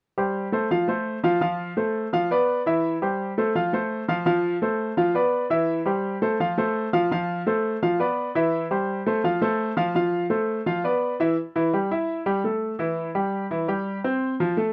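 Close and dry, this 1970s-style studio recording puts a grand piano up front, with only light reverb around it. It is a short, danceable Latin passage cut from a longer piece, in straight 4/4 with a joyful mood. The piano plays alone from 0.2 s to the end at 14.7 s, ranging from E3 to F5 with a clear, present tone. The opening section keeps returning to the same progression of F, Dm69 and C. At 11.4 s the harmony moves to Emadd11 and Em before arriving back on F.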